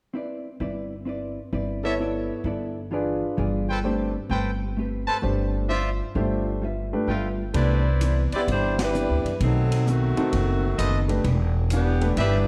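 Big band swing at 130 BPM in C major, energetic and swinging, opens with a dark, clean hollow-body electric guitar, soon joined by a woody, thumpy upright bass up front, while a clear piano with long sustain and a bright trumpet section playing stabs enter at 1.8 seconds over rich jazz chords. At 7.5 seconds a distant, roomy drum kit with dark cymbals and a punchy kick comes in, and the up-front saxophone section takes the melody with light vibrato from 8.3 seconds, just before a band accent at 8.7 seconds. The production is dark, with light reverb, and the clip is cut from a longer piece.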